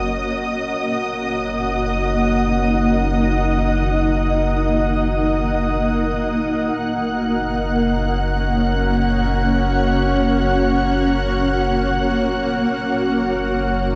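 A bright, blurred granular cloud pad sits up front with sustained, slowly blooming chords over Gb and Ebm/Gb in this peaceful ambient piece in free time, while a deep, round analog bass holds a low Gb beneath and a lush, bowed symphonic violin section adds a smooth, vibrato-rich texture up high, all bathed in a cathedral reverb that lends a warm, spacious glow across the 14 seconds.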